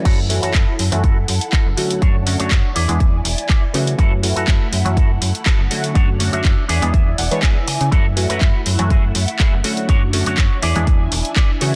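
Filtered disco house in F# minor at 122 BPM, this groovy, nostalgic cut from a longer piece moves in a straight 4/4 through a looping F#m7, Dmaj7/F# and E7 progression. A punchy, layered electronic kick sits up front, joined by a tape-warm analog drum machine supplying crash cymbal, handclaps and hi-hat, with sidechain pumping on the hats and cymbals. A slap-like FM bass with a snappy, metallic attack anchors the low end, while a funky, detuned sawtooth polysynth comp adds wave-folded bite through chorus and phaser. A bright, twangy electric guitar run through an envelope filter carries a picked riff, and a clean electric guitar fill appears between 6.4 and 7.9 seconds. Alongside them, a swirling string machine holds slow-attack chords with ensemble chorus, phaser and vintage 12-bit sampler grit, and a filter sweep runs the full length across the synths, guitar and bass, all set in digital ambience with a dense, heavily limited modern master.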